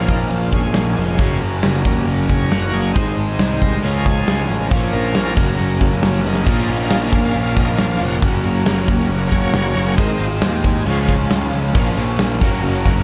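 A straight 4/4 classic rock groove at 136 BPM drives this gritty, brooding excerpt, where a shouting tonewheel organ with key click and slow rotary speaker takes the lead over a Bbm–Gb–Ab–Db progression, backed by two picked overdriven guitar riffs (one crunchy and set back in the mix), a fuzz-laden picked bass, a big, punchy, up-front rock kit with a rolled-off top that plays a fill at 6.3 seconds, and a jingly tambourine joining at 6.5 seconds, all in light reverb.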